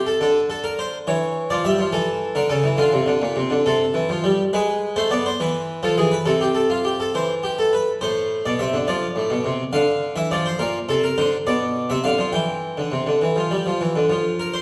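Serious and driving, this short baroque-style two-part invention in D minor moves at 69 BPM in a straight 6/8, cut from a longer piece. A solo harpsichord with a brilliant, plucked, full tone carries both voices from A2 up to G5, sitting up front. The sound blooms in a wet recital-hall reverb heard from further back in the room, and the harmony settles on F at 14.1 seconds.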